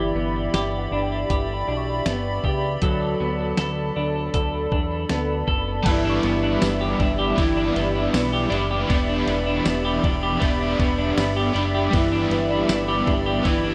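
A straight 4/4 pulse at 79 BPM carries this floating, dreamy dream pop piece in G lydian. A muffled, pitched-down sampler-style drum kit with a thumpy kick and tambourine sits under a fat, detuned analog bass, while a clean, up-front semi-hollow guitar plays arpeggios through subtle chorus and delay and a hollow, flute-like pad holds sustained chords. A delicate, bell-like celesta adds very quiet texture until 9.0 s, and a dark, double-tracked overdriven guitar with tremolo and analog chorus joins at 5.8 s, the whole set inside a light digital ambience.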